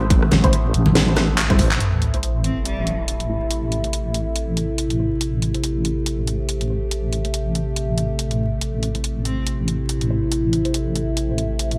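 Deep dubstep in A minor at 141 BPM, dark and meditative, moving in a half-time feel with a swung sixteenth-note lilt across this short cut from a longer piece. A deep, soft wobble bass sits up front on A1 throughout, its sawtooth-and-sine tone rounded by chorus, while an evolving drone of sustained chords with moving, resonant overtones glows behind it through chorus and built-in reverb. The opening drop pairs a tight, layered electronic kick with bright, thin-skinned congas in the background, ending in a drum fill before both stop at 1.7 seconds. The garage kit carries on to the end with a cracking snare, handclaps, rim clicks and bright hats wrapped in gated reverb, and an impact with a sub drop arrives at 1.8 seconds. Muted, detuned dub chord stabs flicker in the background through phaser, analog chorus and dub echo, and a distant bowed cello with smooth vibrato surfaces briefly around 2.4 seconds and again near the close, trailing dub echo. 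The mix has light reverb and a bright 1980s-style digital sheen dusted with vinyl crackle.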